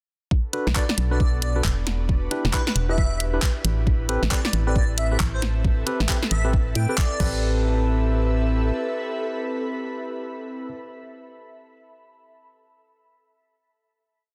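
This is a complete UK garage track in two-step style, bouncy and moody, running at 135 BPM in A dorian with swing on the sixteenths. An up-front, tape-warm kick knocks out four on the floor, while an overdriven garage kit adds a cracking snare, claps, a crash and skipping swung hats and rims. Beneath them, a hollow, dark FM bass with a percussive, organ-like attack skips through a syncopated line. A bright, clean tine electric piano plays a close-voiced rhythmic chord riff with dub echo over Bm7, Em7 and Am9, and a soft, airy lead with chorus, vibrato and dub echo floats short phrases above. Two pads each pump against the sidechain: a breathy one in the background with chorus and a slow attack, and an ethereal, detuned one carrying ensemble chorus, phaser and its own reverb. The groove ends at 7.4 s, after which the bass lingers until 8.7 s while the piano and pads hold a final note until about 11.1 s, set in light digital ambience and a dense, heavily limited master.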